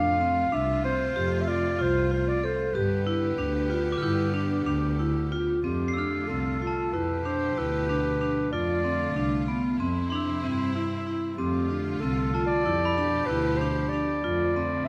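Close, detailed microphones and light reverb frame this hopeful, shimmering piece of contemporary chamber music in 9/8, where a mellow solo clarinet carries the melody up front over bright, biting bowed string chords, ringing hard-mallet vibraphone arpeggios with a slow motor vibrato, a veiled, muted double bass, and a faint, bell-like glockenspiel texture, before the music moves into a new section at 5.6 seconds.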